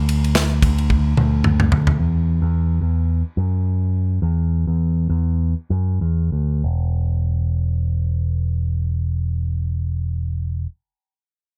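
A picked electric bass anchors this short cut from a longer pop piece. Its bright, amped tone runs through an envelope filter and sits up front, moving between E1 and F#2. The mood is earnest and bittersweet, with a tempo between 93 and 110 BPM in 4/4 and a light 16th-note swing. An acoustic drum kit, airy and polished in a studio room, enters a moment after the bass with handclaps, a punchy kick, a medium-tuned snare, ride cymbal and toms. A drum fill closes the kit's brief part at 2.0 seconds, after which the bass plays alone, slowing down until 6.6 seconds and carrying on to 10.7 seconds. The sound is dry, with little reverb.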